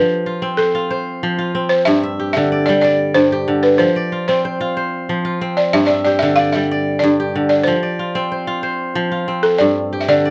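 Balafon and kora begin together in this joyful West African traditional piece, moving at 124 beats per minute in a straight 12/8. Sitting up front, the fingerpicked kora spins bright, ringing arpeggios that span from its low register up to E5, with a crisp attack on each note. Over it, the balafon carries the melody between A4 and F5, its woody, buzzing tone struck with hard rubber mallets and sounding dry, with a slightly vintage, band-limited character. The harmony alternates steadily between F and G, giving the passage a cheerful, rocking motion. A light reverb adds gentle space to this 10.3-second fragment of a longer performance.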